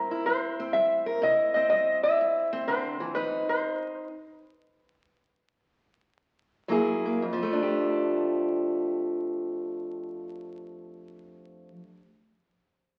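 Crackling like a very old 78 rpm record and bathed in a large studio reverb, this rollicking, soulful acoustic country blues fragment swings in 4/4 as a metallic, nasal lap resonator guitar played with slide and fingerpicks carries the melody up front until 3.9 seconds, while a bright, boxy parlour steel-string guitar, fingerpicked with audible finger squeak, accompanies through 12.1 seconds; the music slows from 3.1 seconds and halts until 6.7 seconds before resuming over chords moving from C and F5 to Gb9 and F69.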